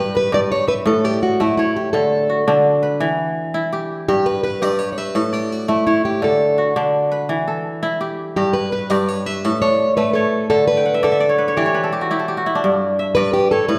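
West African string music in a hypnotic, flowing 12/8, this excerpt pairs a bright, ringing kora spinning arpeggios across three octaves with a fingerpicked plugged-in steel-string acoustic guitar carrying a warm melody, both up front and playing throughout. A cycling progression of G, A, D and E minor repeats until the kora breaks into a crisp fill at 10.8 seconds, and a brief new section arrives at 12.6 seconds before the cut. The sound sits in a generous church or concert-hall acoustic with a wet, lingering reverb.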